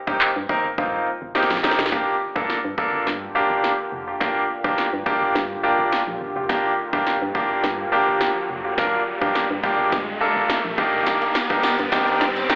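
Heard as if through a club PA with a thin, telephone-like filter and roomy reverb, this driving, bittersweet dance-pop excerpt opens with a barely audible soft-mallet marimba before a brilliant concert grand piano, an overdriven, punchy analog drum machine and a hollow, organ-like FM bass take over, joined at 1.9 s by a detuned, resonant sawtooth pad in the background for a long build-up, with piano, bass and pad all pumping to the sidechain, a background riser with slapback echo entering at 3.4 s and a very quiet, jingly tambourine arriving at 11.1 s.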